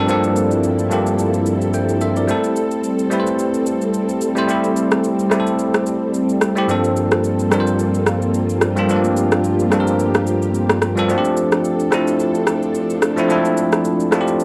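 Soulful and deep, this amapiano excerpt moves at 109 BPM in 4/4 with a gentle 55% swing on the sixteenths, set in G dorian. A bell-like tine electric piano carries the accompaniment up front, its bright, clean and direct tone spanning G2 to G5. Beneath it, a string machine voiced as violas holds sustained chords between F3 and A4, its warm, vintage sawtooth sound shaped by a soft attack, a mellow tone and an ensemble chorus. An electronic shaker and rim click sit up front from 0.1 seconds with a produced, electronic character. The harmony moves from Gm11 to Am7 at 2.3 seconds, returns to Gm11, and settles on F6 at 11.1 seconds. Every part carries the colour of cassette tape, heard through a moderate small-room reverb in this home recording.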